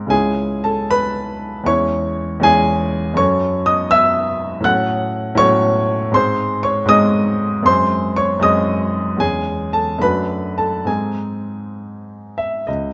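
A baby grand piano opens alone at the very start, setting out a passionate, stormy romantic character piece in C# minor. The piece moves in a rubato 6/8 at roughly 65-82 BPM counted in dotted quarters, its pulse pushing and yielding throughout. The piano sounds warm and natural, its notes decaying quickly and sitting up front, spanning from C#2 up to F#6. The harmony moves from C# minor through F# minor to G#, then briefly touches D/F# before landing back on G# at 10.9 seconds. Close, detailed microphones capture the instrument inside a moderate recital hall reverb, and the music is cut from a longer piece, breaking off at 12.9 seconds.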